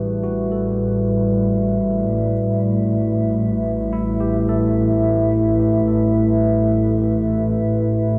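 This short ambient passage in free time opens with everything at once: a warbly, tape-like pad holds sustained chords up front, a bowed double bass section sits on a low A1, and a tine electric piano fades in over the full 8.2 seconds with quiet arpeggios. The mood is peaceful and warm, built on a single A7 chord with the third omitted. The pad sounds detuned and lo-fi, with a slow attack, long release, chorus and its own reverb lending it a dusky, warbling character. The double bass section is close and expressive, played with vibrato in a studio setting. Further back, the electric piano has a bright, barky, clean tone, colored by phaser and delay as it gradually rises into view. A cathedral reverb with a 6.0-second decay bathes the recording in a dark, warm production, and the passage is cut from a longer piece.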